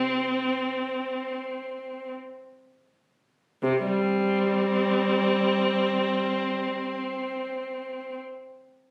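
Captured on a phone in the room with light reverb, this solemn, introspective fragment of a classical, baroque-style suite movement features a single bowed viola playing up front in free time, tuned to A4 = 439 Hz, its expressive, smooth-topped tone shaded with vibrato and portamento between C3 and C4, slowing down over the opening 3.6 seconds before a new section begins and the line ends at 8.2 seconds.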